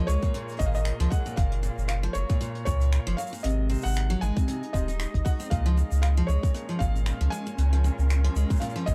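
A lightly swung sixteenth-note groove in 4/4 drives this short, playful folktronica fragment, cut from a longer piece. A tight, up-front electronic kick arrives at 0.2 seconds, with a natural-sounding brushed kit in a small room adding finger snaps, hi-hat and shaker. Underneath, a round, deep sine sub bass with a fast attack holds sustained notes, while a bright, full-bodied steel-string acoustic guitar picks arpeggios through a tape echo. On top, a felt-muted upright piano carries the melody in an intimate, mellow voice with audible action noise, also touched by tape echo, and a veiled con sordino string quartet with vibrato and a soft attack holds dark sustained chords. The harmony moves from Db6 through Gbmaj7 and Ab7 before returning to Db6, and the whole track sits in a dark, warm production with light reverb.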